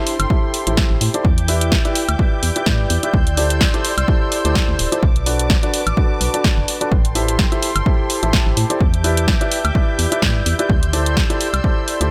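This energetic, soulful piano house excerpt opens with a clear, vintage concert grand playing a riff through a low-pass filter and tape echo, together with a dark, woody violin section holding lush bowed chords with vibrato and a warbling, lo-fi pad drifting in the background with chorus, phaser and its own reverb. Within the first moments a punchy analog drum machine brings hi-hat, snare and woodblock, then a hollow, organ-like FM bass with a fast attack and decaying notes settles underneath, and an up-front electronic kick arrives at 0.3 seconds. The drum machine and kick both have a tape-warmed character, re-recorded in a small room, with a lightly swung sixteenth-note feel. The piano, strings, pad and bass all pump against the kick, giving the groove its breathing house motion. The harmony cycles through Am7, Em7, D9sus4 and Bm7 in a single continuous section, wrapped in digital ambience, before the kick drops out at 11.7 seconds as the rest plays on to the cut.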